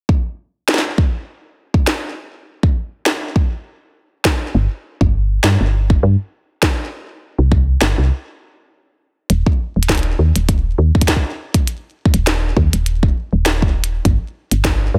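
A round, dark FM bass with a woody, soft tone and fast-attack, decaying notes enters at 4.5 seconds and sits up front in this playful, wistful IDM piece cut from a longer work. Alongside it, a deep electronic kick and a glitchy kit of tiny snare and clicky hi-hats, the kit touched with digital delay, both re-recorded in a large room and placed up front, move with a light 16th-note swing. The groove breaks off at 8.1 seconds and resumes in a new section at 9.3 seconds, all in a dry, close mix.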